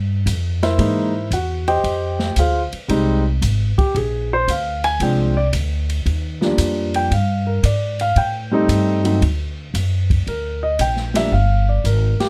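A woody pizzicato upright bass opens this sophisticated, playful swinging jazz piano trio cut from a longer piece, with a warm acoustic drum kit of boomy kick, medium-tuned snare, hi-hat and dark ride joining at 0.3 seconds. A dark, mellow concert grand enters at 0.6 seconds and carries the melody as a solo, sitting up front beside the steel-strung bass, while the softer drums stay smooth in the background. The harmony moves through rich extended chords such as Cadd11, C7alt, Fm9, Bb9 and Ebmaj9 before turning to Gm7, all captured in a dry studio sound.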